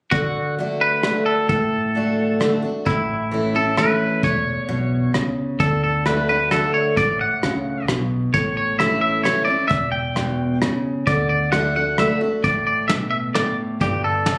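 Captured on a phone in the room, this short cut from a longer piece carries a club reverb and compression that give it a close, lived-in sound. It's a sunny, easygoing honky-tonk and classic country tune in D major, moving at 132 BPM in a straight 3/4 time. A bright, clean electric guitar sits up front with a twangy picked melody, while a full-bodied dreadnought acoustic guitar plays a picked accompaniment beside it. A soft brush kit in a small room supplies smooth, dark hi-hat, rim click, medium-tuned snare and a tight kick with a rolled-off top. At 2.9 seconds a round, foam-muted vintage electric bass joins through an amp, and from 5.6 seconds the piece moves into a new section that trades between D and A before closing on a Gmaj7sus2.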